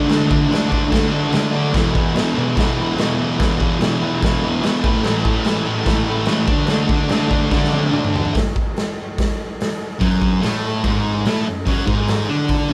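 A thick, fuzz-laden electric guitar opens this gritty garage rock clip in F# minor, its bright, double-tracked picked riff sitting up front from the first instant. A raw acoustic drum kit joins almost at once at a driving 145 BPM in straight 4/4, with a punchy kick, a medium-tuned snare, hi-hat, crash cymbal and toms all captured in a saturated, stone-walled room sound with a rolled-off top and a pumping ambience. The riff moves through D5, E5 and A5 power chords before a drum fill around 7.5 seconds launches a brief unchorded stretch at 8.3 seconds. The guitar then settles onto F# minor at 10.0 seconds for the closing passage. Moderate room reverb and the feel of a band playing live together give the whole clip a rough, immediate edge.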